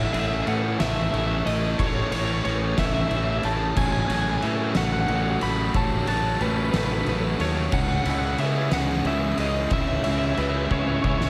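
Lightly reverberant studio ambience frames this cathartic, melancholic post-rock excerpt in 6/8, where a slightly broken-up lead guitar with slapback echo carries the melody over a punchy, round fuzz bass and a gritty, oversized low-tuned drum kit up front. Sludgy overdriven and fuzz-distorted guitar riffs and twangy chorused guitar arpeggios sit in the background, joined by very quiet ringing vibraphone arpeggios and a very quiet icy, crystalline pad, all on Amaj7, F#m7/A and C#m7 chords, and the excerpt closes with a drum fill at 10.7 seconds.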